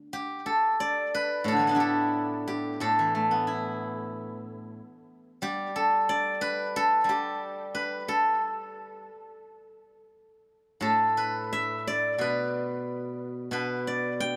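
A bright, silvery steel-string zither, played with fingerpicks and ringing up front through a touch of tape echo, carries this serene, pastoral fragment of Chinese traditional solo plucked-string music alone for its full 14.4 seconds in a free, rubato feel, spanning low to high registers within a small, dry, close room sound in the manner of a 1970s studio recording.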